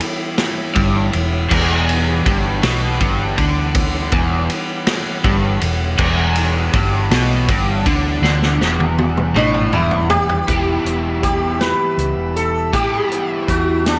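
Psychedelic rock in E minor at 54 BPM in 6/8, hypnotic and mysterious, where a buzzy, overdriven combo organ holds sustained chords in the background with spring reverb beside a vintage drum kit with dark cymbals and a punchy kick, then an overdriven, double-tracked electric guitar riff with flanger and a round hollow-body bass join at 0.8 seconds, and during a drum fill a buzzing, shimmering sitar melody with analog delay enters up front at 9.4 seconds, over a faint mains hum.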